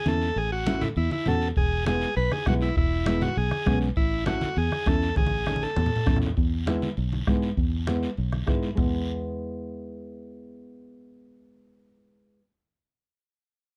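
A dark, lightly reverberant production gives this festive, danceable cumbia a warm glow. A buzzy, overdriven combo organ carries the melody up front until 6.2 seconds, over a thumb-plucked nylon-string guitar with fresh strings and a round, foam-muted fingered electric bass. Thick-skinned, low-tuned congas and a raspy guiro drive the groove, joined at 1.6 seconds by a close, soft-beater bombo, and all three percussion parts drop out at 8.8 seconds, leaving guitar and bass to carry on.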